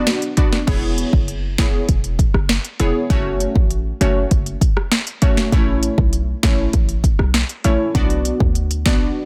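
A glassy, crystalline wavetable pluck sits up front in this hypnotic, sultry dancehall excerpt, its bright, detuned tone layered with a sub octave, filter sweep, chorus and sidechain pumping as it moves through Bm, E6, F#m and A. An electronic afro-pop kit with a deep kick, sharp snare, smooth hi-hats, rim clicks and crash cymbal drives the straight 4/4 groove. A punchy, tight 808-style bass joins at 0.7 seconds, all set in a digital ambience with a dense, heavily limited modern master.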